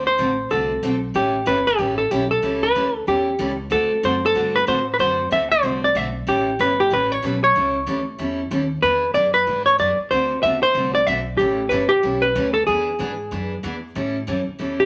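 From the first beat, a dark, clean hollow-body jazz guitar carries the melody up front, over a bright, full-bodied picked steel-string acoustic guitar and a woody, growly pizzicato upright bass in a cheerful western swing groove at 187 BPM with a swung feel. The passage moves through dominant and ninth chords in A mixolydian, from D7 and A9 to E9 and D9 before settling on A7 at 14.0 seconds. Moderate studio reverb adds a sense of room to this short cut from a longer country piece.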